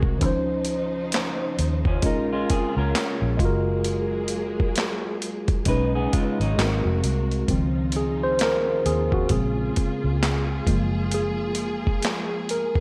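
A worn, slightly out-of-tune tine electric piano with light overdrive sits up front in this sensual neo-soul R&B groove at 66 BPM in Db major, moving through chords like Dbmaj9, Bbm7 and Gbmaj9 before taking a solo from 7.5 seconds. Alongside it, a gritty, pitched-down boom bap drum kit with a thumpy kick, high-tuned snare, handclaps and hi-hat swings over a dark, round, foam-muted fingered bass, while a lush bowed string section holds smooth, vibrato-rich chords at a lower level. A slightly broken-up electric guitar through a small old amp adds a picked second line between 1.9 and 6.8 seconds, all set in light reverb in this warm passage cut from a longer piece.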